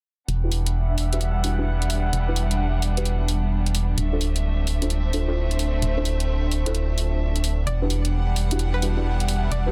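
A skippy two-step garage groove at 130 BPM swings its 16ths at 64%, with layered electronic hi-hats and an up-front, hollow, organ-like FM bass anchoring a late-night E minor mood that moves from Em9 to Dm9 and back at 7.7 seconds. Dark, woody bowed violins hold low-passed chords alongside a breathy chorused pad with a moving notch, while deep, detuned chord stabs with chorus and delay carry a filter sweep throughout. At 7.7 seconds a twangy, nasal resonator pluck enters in the background, all within a dense, heavily limited modern mix that has little reverb.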